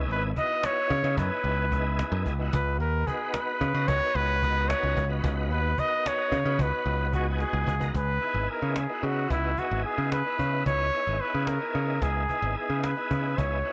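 An echo-heavy small-room mix with light reverb frames this brooding, driving progressive instrumental excerpt in 5/8 at 221 BPM in C# dorian, where an up-front warm trumpet in a classical style carries the melody through dub echo over bright, punchy picked electric bass, a woody, soft-handed cajon that also trails dub echo and plays a fill at 7.4 seconds, and a smooth tonewheel organ with key click, chorus vibrato, fast rotary speaker and dub echo accompanying on C#m7 and G#m7/C# before a new section opens at 8.0 seconds.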